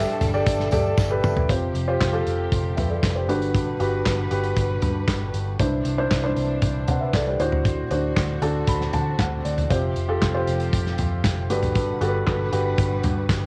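A soft, intimate felt-muted upright piano opens this hopeful, anthemic piano-driven pop excerpt in G major at 117 BPM, joined at once by a dark, round, foam-muted picked electric bass and a lush, bowed string section with vibrato in the background, the piano and strings carrying a cassette-tape coloring. A loose indie drum kit with a punchy kick, medium-tuned snare, hi-hat, toms and handclaps sounds muffled and lo-fi with a rolled-off top, while a bright, jingly tambourine appears only briefly at the start. After a drum fill leads into the main section at 1.5 s, the harmony moves through Fsus2, Gmaj7, Cadd9 and D7, and a mellow felt piano fill arrives at 8.2 s within a light reverb that suits the home cassette recording.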